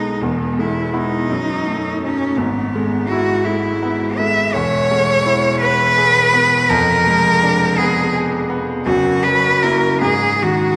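Serene and lyrical, this romantic classical duo for cello and grand piano moves at a rubato 55 BPM in 6/8, cut from a longer piece. A single bowed cello sings the melody with a rich, focused, close tone and vibrato, placed up front, while the grand piano accompanies with a bright, brilliant sound and long sustain, both playing throughout the 10.8 seconds. The harmony drifts from E major through diminished colors and an F#7 before settling on a bare G#5 near 10.0 seconds, all bathed in the long, wet reverb of a church.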